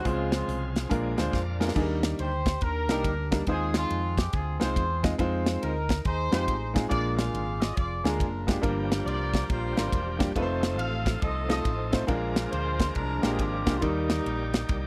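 An uptempo gospel passage with a swinging, uplifting and hopeful feel, cut from a longer piece and recorded in a dry, close 1970s-style studio sound. A horn section carries the melody with a warm, roomy ensemble tone touched by slapback echo, while a clear baby grand piano accompanies up front, its action noise audible and intimate. A fingered electric bass supplies a round, punchy low end, and an acoustic drum kit with a tight kick, medium-tuned snare, hi-hat, ride and crash sits airy and polished at the front, marking the opening with a fill at 1.3 seconds. A bright tonewheel organ, shouting and lightly overdriven through a slow rotary speaker, holds sustained chords at the start, drops out, returns at 8.6 seconds, and adds a fill at 14.7 seconds. The harmony moves through rich seventh chords before settling back on the home major seventh near the close.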